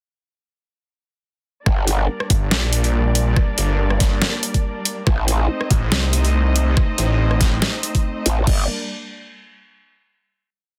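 A half-time beat with a lightly swung feel drives this short, chaotic and menacing piece of heavy wobble dubstep. An overdriven, knocking electronic kick and a layered dubstep kit with a deep snare, bright hats, rim clicks and crash sit up front in a dense, heavily limited mix, while a veiled, muted chamber string section holds sustained chords pumping beneath the drop from 1.7 seconds. A saturated growl bass fires brief wobbling, formant-filtered phrases, and a snarling distorted saw bass answers with chopped phrases before the drop settles on a final minor chord at 8.5 seconds.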